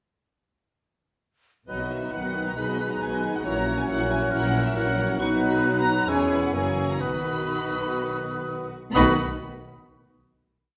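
A violin section sings the melody with vibrato and portamento over a full symphony orchestra entering together at 1.7 seconds, in a short, cheerful, lively romantic piece in B major at 122-140 BPM with rubato, where airy flute, oboe, clarinet and dark bassoon weave independent inner lines, a second violin section and woody violas rock a two-note figure, mellow French horns hold sustained chords, and cellos and distant double basses carry the bass in a reverberant recital hall, slowing from 4.3 seconds before settling on a final chord at 8.9 seconds.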